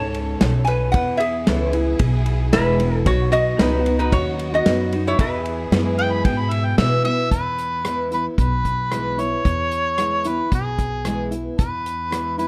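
A nostalgic, down-home mood runs through this honky-tonk and classic country passage in E major, cut from a longer piece and moving at a straight 113 BPM in 4/4. A nasal, metallic lap resonator guitar carries the melody up front, played with slide and fingerpicks, until 6.8 seconds. Behind it, a bright, twangy pedal steel guitar with volume swells and a lush, bowed violin section hold sustained chords in the background through the opening section. A picked steel-string acoustic guitar with audible finger squeak, a woody, growly pizzicato upright bass and a dark, small-room drum kit with a tight kick keep the accompaniment going throughout. A mellow harmonica enters at 6.0 seconds and takes an up-front solo from 7.3 seconds, with scooped notes, light vibrato and a punchy, vintage tone. The sound is dry, with little reverb.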